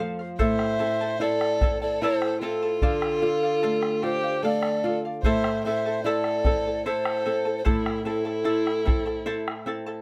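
A slow, straight 3/4 pulse at 74 BPM carries this earthy, melancholic Andean folk excerpt in A minor, where a mellow, hollow, airy pan flute sings the melody over a dark, woody bowed violin line with vibrato, shimmering fingerpicked charango and small fingerpicked nylon-string guitar with audible finger squeak, all grounded by a deep bombo, as the chords move from Am to Dm and back to Am at 5.2 seconds in a close, detailed recording with light reverb.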